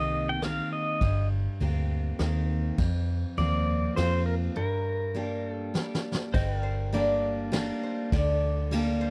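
A three-beat waltz pulse, brushed on a vintage kit with dark cymbals and a boomy kick, carries this brooding, heartbroken honky-tonk and classic country fragment, where a twangy, up-front pedal steel sings the melody over a bright, full-bodied picked acoustic guitar and a round, foam-muted electric bass in a dry, close 1970s-style room, until a break at 4.6 seconds and a drum fill give way at 6.3 seconds to a second pedal steel holding lush chorused chords, joined moments later by a metallic, nasal lap resonator guitar playing a slide solo through tape echo.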